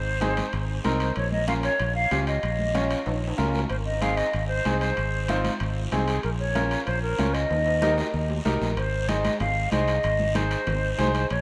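A rough home-demo mix bathed in lush hall reverb carries this joyful, danceable cumbia excerpt, where an airy, close-miked concert flute with vibrato and a crisp attack sings the melody over a round, up-front fingered electric bass and a brilliant, woody upright piano with long sustain, while band-limited vintage congas and ringing metal-shell timbales sit in the background beside a raspy, distant guiro, with drum fills arriving at 3.1 and 7.5 seconds.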